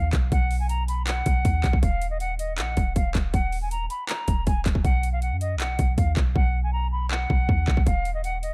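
A reedy, airy flute and a deep, boomy 808-style bass open this brooding trap cut together, with the drum kit arriving a moment later at 0.1 seconds. The flute carries the melody in a straight, tongued tone whose highs are rolled off by a low-pass filter, sitting further back in the mix than the other parts. Beneath it, the 808 bass is dark and sine-based with a noise layer, fast attack and decaying notes, placed up front alongside the drums. The overdriven electronic kit, felt in a half-time groove, pairs a hard-clipped kick with metallic hi-hats and handclaps, and the hats drop out from 6.4 to 7.9 seconds. The harmony alternates between B and Ebm, and the whole melancholic passage, cut from a longer piece, sits in a dark, warm digital ambience.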